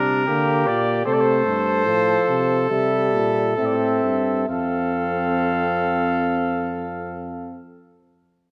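All four brass voices sound together from the opening moment in this lively, elegant classical canzona fragment for brass ensemble, cut from a longer piece and written in an imitative style. A mellow, soft-attacked trumpet carries the melody from a distant, roomy position that still sits up front, while a clear, close-miked flugelhorn shapes the second line just beneath it. A trombone with light vibrato supplies the accompaniment from further back in the room, and a bass trombone with a smooth top anchors the bass. The opening phrase slows down through its first 4.5 seconds as the harmony moves from G minor through F to C, and a fresh phrase begins on F at 4.5 seconds, with all four parts ending together at 7.6 seconds. A moderate scoring-stage reverb lends the ensemble a spacious, polished finish.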